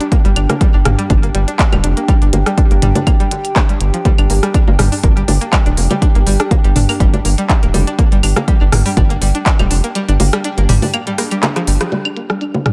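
A punchy, up-front analog kick drives this clinical, sparse minimal techno excerpt at 122 BPM with a light 16th-note swing, alongside a rubbery, hollow square-wave bass, a twangy string-like resonator pluck riff with chorus, tape color, delay and sidechain pumping, a warbling lo-fi pad with slow attack and built-in reverb, an overdriven click kit of clicky hi-hats, handclaps and rim clicks, and a layered garage kit of bongos, claves, rim clicks and toms through digital delay, before the kick drops out at 10.0 s and a drum fill from 11.2 s leads to a band accent at 11.8 s.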